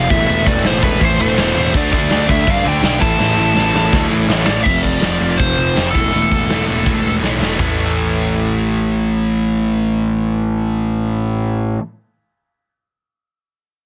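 Punk rock, raw and aggressive, cut from a longer piece, with a nasal lead guitar through a parked wah carrying the melody until 7.2 seconds over two picked, overdriven rhythm guitars, one crunchy and one sludgy, sitting in the background. A growly, fuzzed electric bass, bright and direct, holds down the bass line beneath them, while a big acoustic rock kit sits up front with a punchy kick, a medium-tuned snare and a rolled-off top, playing fills before dropping out at 7.7 seconds. The dense, heavily limited master is dry, leaving the two rhythm guitars and bass to finish the passage alone.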